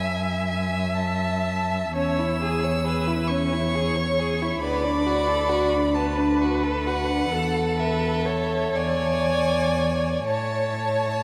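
The music unfolds in 6/8 with a free, rubato pulse: a slow romantic movement for string quartet, cut from a longer piece, in a warm and lyrical mood. A clear, focused first violin carries the melody high above the others, sounding distant, while a rich second violin sings a second line beneath it. The viola, with a similar clarity and heard from afar, supplies bowed accompaniment, and a smooth, even cello anchors the bass from close up. All four players bow with vibrato across the full 11.2 seconds, moving through F#m7, C#m/E and Bm7/D before passing from E6 to A at 10.3 seconds. The quartet is bathed in the long wash of a vast, echoing cathedral.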